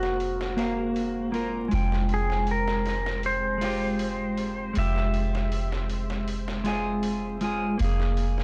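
A twangy, bright lap steel guitar carries the melody with slide and volume swells, its clean, compressed tone trailing dub echo until it drops out at 5.9 seconds. This is a dark, hypnotic trip hop fragment at 79 BPM in 4/4 with a straight feel, set in F harmonic minor and cut from a longer piece. Up front, a clean, picked electric guitar plays accompaniment through harmonic tremolo and a low-pass filter sweep, while a deep, round, sine-like 808-style bass holds a soft F1 beneath it. In the background, a string machine with cellos sustains slow-attack chords, warbling through ensemble chorus with a sawtooth sub-octave and 12-bit sampler grit. A quiet, pitched-down sampler-style kit adds high-passed hi-hat and a medium-tuned snare, compressed and tape-warm. The harmony moves from Gbmaj9/F to Fmadd9 at 1.7 seconds, and the whole recording sounds dry and gritty, with transformer saturation and vinyl crackle.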